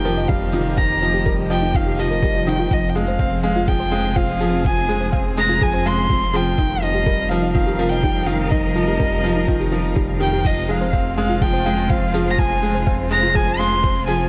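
A dark, sul tasto violin melody with vibrato and delay opens this melancholic, hypnotic piano and strings electronica in F minor at 124 BPM, joined at once by a distant string quartet's sidechain-pumped chords, a woody, brilliant upright piano riff with audible action noise, a deep, rumbling detuned saw bass and a background brush kit's dark cymbals, while a soft, round chorused pluck arpeggiates from 0.1 seconds and a muffled, thumpy pitched-down kick enters at 0.3 seconds, all set in a small, lightly reverberant room as the harmony moves between Ebadd9/F and Fm.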